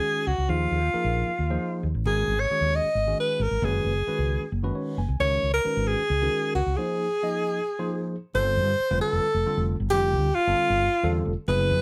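Funky and intense, this jazz excerpt moves in an odd 7/8 metre with a straight feel, cut from a longer piece. A clear, close-miked alto saxophone carries the solo melody up front, its vibrato and scooped notes colored by a slapback echo. A clean tine electric piano, heard through its built-in speakers and treated with phaser, supplies the sus-chord accompaniment and adds a short fill at 4.5 seconds. Beneath them, a woody fretless electric bass enters at 0.3 seconds, dark, growly and round, with a hollow-body amped tone and analog chorus that keep it prominent in the mix. A break arrives at 6.8 seconds before a new section begins at 8.3 seconds, all set in light reverb.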